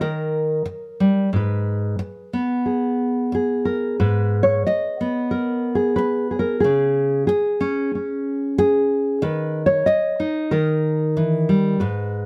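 Close, detailed and lightly reverberant, this haunting, wistful folk excerpt features a solo nylon-string guitar, dark, full-bodied and thumb-plucked, sitting up front at 92 BPM in G# minor as it moves through chords such as G#m, C#5 and D#5 from 0.0 to 12.3 seconds.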